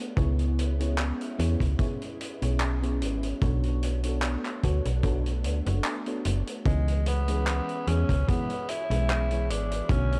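A woozy, hazy vaporwave cut at 74 BPM opens on a lush, dreamy FM electric piano with a soft pad layer, drenched in chorus and tape echo, over a silky string machine holding chords in the background with ensemble chorus and 12-bit sampler grit. From 0.2 s a snappy, metallic slap-like FM bass with tube saturation sits up front alongside a punchy, saturated kick and a vintage kit of handclaps and hi-hat, lightly swung on 16ths as the chords move between C#m7 and Bm9. At 6.7 s a raspy tenor saxophone takes the melody with its own tape echo, all set in a small, dark room with light reverb.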